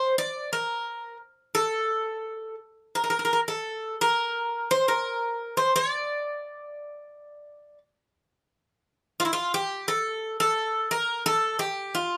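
In a straight 4/4 at 86 BPM, this cool, bittersweet Greek folk fragment features a solo acoustic bouzouki, picked on double strings with some octave-doubled courses, ringing bright and metallic up front in a small room between E4 and D5, and moving into a new section at 8.5 seconds before the cut at 12.2 seconds.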